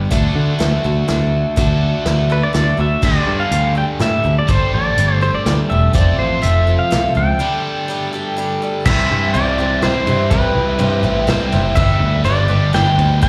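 Opening on a boxy, finger-squeaking swing-picked acoustic guitar, a biting, double-tracked overdriven guitar riff with slapback echo and a round, up-front electric bass, with a vintage kit of dark cymbals and punchy kick joining at 0.1 s, this nostalgic, open-road folk and heartland rock excerpt rolls along at 124 BPM in 3/4. It brings in a twangy, fingerpicked pedal steel melody with volume swells at 2.3 s and a reedy, breathing pedal harmonium holding soft chords from 3.0 s, then hits a brief break at 7.4 s before moving on, all heard as a live club gig through the venue's PA.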